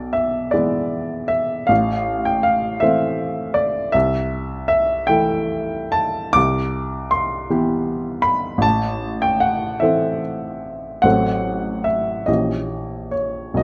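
A brooding, passionate romantic character piece for solo baby grand piano opens on an E7/B chord before settling into A minor, moving in a slow, rubato 6/8 at around 44-55 BPM with a warm, present tone and short sustain. The harmony passes through Am/C and Cmaj7, then darkens through F#dim/A toward an A#dim7 at 12.3 seconds, with the piano spanning from A1 up to D6. Recorded with close, detailed microphones and light reverb that keep the instrument up front, this 13.6-second passage is cut from a longer piece.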